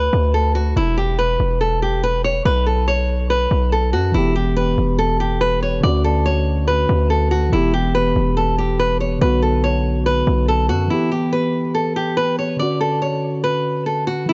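A fingerpicked flamenco guitar carries the melody up front, its finger squeaks audible, over a heavy, distorted 808-style bass with a fast attack, decaying sine tone and noisy grit in this dark, menacing half-time trap cut from a longer piece. A mellow, clean tine electric piano with subtle chorus enters at 4.1 seconds to add minor-leaning chords beneath the guitar. The bass drops out at 10.9 seconds, leaving guitar and piano in a dry, gritty hardware-recorded sound with a dulled top end.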